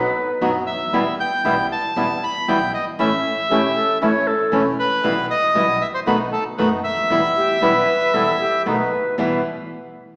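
Passionate and melancholic, this rubato tango fragment in E harmonic minor at 116 BPM sets a dark, smooth bandoneon melody over bright, up-front bandoneon stabs, an airy straight-toned flute second line with rolled-off highs, a fingerpicked flamenco guitar entering at 0.4 s, and a woody pizzicato upright bass in the background, all bathed in a wet recital-hall reverb with a small-speaker sound.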